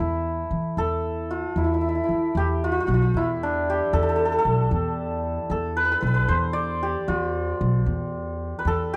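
The sound is dry and close, like a 1970s studio session, with only a light touch of reverb around the players. This hypnotic, soulful Persian modal ensemble piece is set in E dastgah shur and moves at 76 BPM in a straight 6/8, counted in dotted quarters. The hammered santur carries the melody between D4 and D5, its shimmering, ringing tone placed up front. Beneath it, a pizzicato upright bass with steel strings holds the low end from B1 to E3, woody and warm and also close in the mix. Both instruments play throughout this short passage cut from a longer piece, and the opening section gives way to a new one at 2.3 seconds, which runs to the end at 9.0 seconds.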